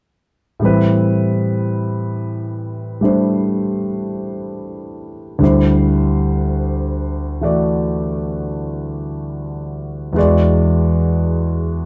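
Swung eighths in a slow 4/4 give this brief jazz fragment an unhurried, late-night pulse, with a solo concert grand piano playing accompaniment from 0.6 to 11.9 seconds across Am9, D9sus4 and E9. The piano sounds clear and up front, its deep bass and audible action noise adding a close, natural intimacy. The dark production carries little reverb, keeping the mood intimate and private.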